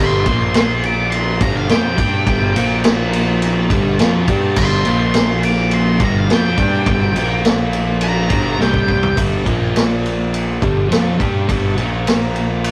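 A straight 104 BPM groove in 4/4 drives this gritty, heavy blues rock and southern rock cut in G minor, where a picked octave-fuzz lead guitar solos high from the start until 9.2 seconds over a double-tracked, crunchy overdriven rhythm guitar riffing on G5 and Bb5 power chords, a growly fuzz fingered bass, and an up-front vintage drum kit with dark cymbals and a punchy kick whose fill at 8.6 seconds leads into the closing section, all captured with a rough rehearsal-room feel and tube saturation in a moderate booth ambience.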